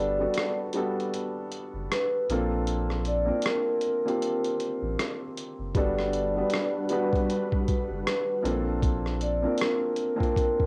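Nostalgic and cosy, this swung lo-fi hip hop fragment from a longer piece sets a ringing soft-mallet vibraphone melody with tape echo over a muted, intimate felt-muted upright piano, both steeped in cassette-tape haze and plate reverb, while a deep sine-and-triangle sub bass with octave and a gritty, compressed boom bap sampler-style kit with a thumpy kick, hi-hat and rim click sit up front. A silky, vintage string machine with ensemble chorus drifts in the background from 5.7 to 8.8 seconds as the chords move between Gmaj7 and Bbmaj7, all captured as a home recording on cassette in light reverb.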